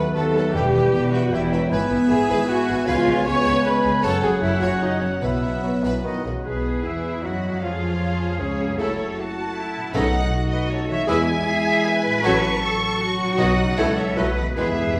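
In a rubato three-four, this dramatic, urgent classical passage sets a distant, lush violin melody over a second violin line with expressive portamento, a pure silver flute, clear clarinet, a warm oboe in the background and a warm bassoon, all supported by intense viola accompaniment, mellow French horn chords, a quietly ringing fingerpicked harp, focused cellos and smooth double basses, while timpani punctuate at intervals before a fill at 14.6 seconds, everything bathed in a church-like hall reverb with a faint mains hum.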